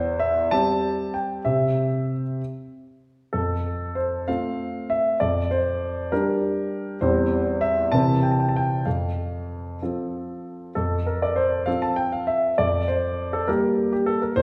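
The recording opens onto a wet recital-hall space, its 1.4-second reverb tail lending a resonant, churchlike bloom around a single grand piano. This is a classical-period sonatina in F major, graceful and playful, moving in a lilting 6/8 at 65 dotted-quarter beats per minute with a straight feel. The warm, present piano sits up front and plays solo throughout, ranging from E2 up to A5, its long sustain letting notes ring into the hall. The harmony moves through simple cadential motion, from C over E to C, then F and a Gm7 over F, back through C7 to F. The opening phrase runs to 10.8 seconds before it returns to begin again, and this passage, taken from a longer piece, breaks off at 14.4 seconds.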